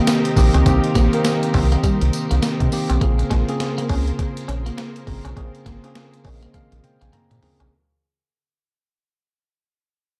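New jack swing R&B with a bouncy, slick feel at 102 BPM in Bb dorian, where a bell-like tine electric piano and veiled, muted strings hold the harmony from Cm7 to Bbm9 while a twangy clean electric guitar with lush chorus plays a riff in the background. A gritty, pitched-down boom bap drum kit with a thumpy kick, high-tuned snare, tambourine and toms swings up front, and a round, deep analog bass joins at 0.4 seconds. The dark, dry production fades out across the whole cut, with an electric piano fill from 6.0 seconds and a drum fill from 6.5 seconds.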